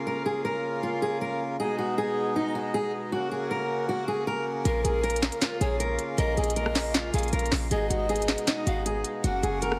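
Heavily compressed, radio-like and lightly reverberant in a small room, this eerie, dark trap excerpt in Bb phrygian at 157 BPM with a half-time feel opens on a reedy, nasal harmonium holding chords under a bright fingerpicked steel-string acoustic guitar melody, until at 4.7 seconds a hollow, breathy bamboo pan flute with tape echo adds a second line while a punchy, tight 808-style bass and an up-front trap kit of sharp snare, crisp hi-hats, rim clicks and handclaps drop in over the Bbm, Abm and Gb changes.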